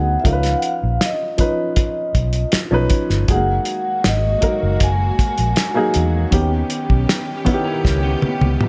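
A ringing vibraphone, played with soft mallets and a slow motor vibrato, carries the airy melody of this cinematic, smooth 1970s-style soul piece cut from a longer work. Beneath it, a dark baby grand piano adds mellow, intimate accompaniment with audible action noise and short sustain. A round, punchy muted electric bass and a cloth-damped, thuddy drum kit, with its tight kick and rolled-off top, sit up front in a small room with light reverb. At 3.3 seconds a lush studio string section enters with soft-attack, sul tasto bowed chords and gentle vibrato as the harmony moves from C#9 to F#69 and on to D#7b13. At 7.5 seconds a bright, twangy, slightly broken-up electric guitar riff emerges in the background through spring reverb, just before a drum fill at 7.8 seconds closes the passage.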